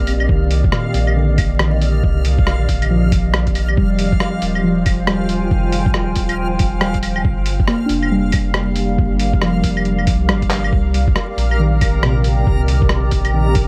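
Ghostly and wistful, this future garage fragment swings over muted, felt-soft synth keys that warble with chorus and analog delay, a blurred granular cloud pad, and a round sub bass, all three pumping to the sidechain beneath a reversed, detuned texture that glimmers high above. A muffled, pitched-down sampler kit of claves, handclaps, hi-hat and rim click joins at 0.1 seconds, and a thumpy, tape-toned kick follows at 0.3 seconds, both carrying 12-bit grit. Vinyl crackle sits over a fairly dry room as the chords move from Cm7 through Fm7 and Gm7, with a drum fill at 10.5 seconds before the return to Cm7.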